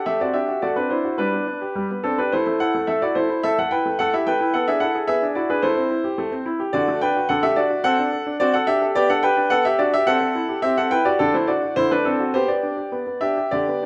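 A clear, open baby grand piano carries this graceful, playful classical-period sonatina alone, its long sustain sitting up front from 0.0 to 13.9 s across a range from D3 to G5. Played with a flexible rubato feel in 4/4, the harmony moves through dominant and minor-seventh chords such as D7/A, E7/B and Am7 before settling on G/B. Close, detailed microphones catch the instrument within a moderate recital hall reverb, and the short passage is cut from a longer piece.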